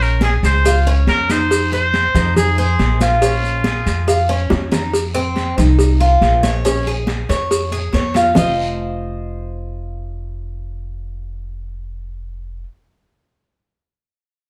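A muted trumpet, nasal and bright with a vintage jazz edge, carries the solo melody up front in this sultry Cuban son and guajira excerpt, playing only until 4.5 seconds. Beneath it, a picked Cuban tres with metallic double strings spins arpeggios, while a woody, thumpy upright bass on gut strings anchors the low end in pizzicato; both stay present through to 12.6 seconds. The groove moves at 140 BPM in a straight 4/4 in F minor, cycling through Bbm7 and Fm7 before shifting between F5 and Bbm7 chords. Damped, high-tuned congas sit close and dry, round low-tuned cowbell and bongos add body, and a raspy guiro and grainy, mellow maracas stay in the background, with a drum fill marking the turn into the next section before the percussion stops at 8.5 seconds. The sound is heard from further back in the room, wrapped in a wet studio reverb.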